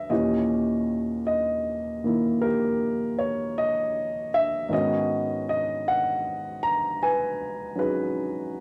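A grand piano plays alone for the full 8.6 seconds of this short jazz ballad passage, cut from a longer piece, its tone warm and natural, with audible action noise that draws the listener close. The mood is smoky and intimate, with a slow, lilting swing in four that lets each chord breathe. The harmony rests on a D#7b9 at the start before settling onto G#m7 at 4.7 seconds. The piano spans a broad register, from deep bass notes up into the upper octaves. It sits up front in a lightly reverberant studio space, and the cassette tape colors the home recording.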